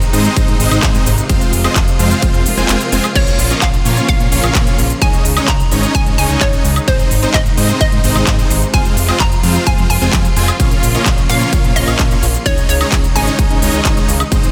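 This short excerpt of festival progressive house has a polished, punchy sound with light reverb, and it moves at 129 BPM in a straight 4/4 with an emotional, anthemic mood. A big-room dance kit of crisp hats, handclaps, shaker, woodblock, ride and crash runs from the very start, and a punchy, up-front electronic kick joins it at 0.4 seconds to drive the track, both carrying a tape-warm, layered character. A fat, detuned analog bass and huge, lush supersaw chords pump against the kick, the supersaws bright and trailed by analog delay. Behind them, a bowed studio string section holds smooth, vibrato-tinged chords that also pump, while a very quiet electronic swell rises from 2.5 seconds into the gap where the kick drops out between 2.7 and 3.2 seconds. At 3.2 seconds a hollow, bouncy square-wave pluck takes the melody with chorus and delay, over a progression that cycles through Ab, Fm, Bbm and Dbsus2.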